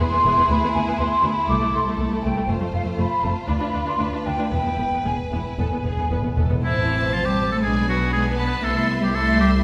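A quick classical-period orchestral movement, restless and dramatic, with a pliant rubato feel, cut from a longer piece and set in a reverberant scoring-stage space. An intense, clear violin section carries the melody over a lush, warm second violin line and a mellow, hollow flute section up front. A distant viola section, a background cello section with portamento and a smooth, even double bass section fill out the lower strings. Hard-mallet timpani with calf heads strike at the opening and return for a fill from 4.5 to 6.6 seconds, the flutes stop at 6.4 seconds, and a solo oboe with light vibrato takes up a second line from 6.6 to 9.5 seconds.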